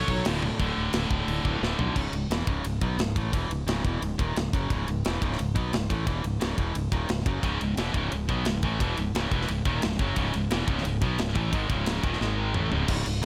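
Heard up close in a small room, this dark, heavy metal excerpt moves in a straight 4/4 with an up-front, studio-room presence. A bright, overdriven electric guitar riffs throughout over a growly, fuzzed fingered bass, while a second high-gain, distorted guitar joins the riffing for the opening 2.0 seconds, drops out, and returns at 7.4 s. An acoustic kit with bright cymbals, a medium-tuned snare and a tight kick drives the music, with drum fills that include one at 12.2 s as the chords move from G#5 back to C#m.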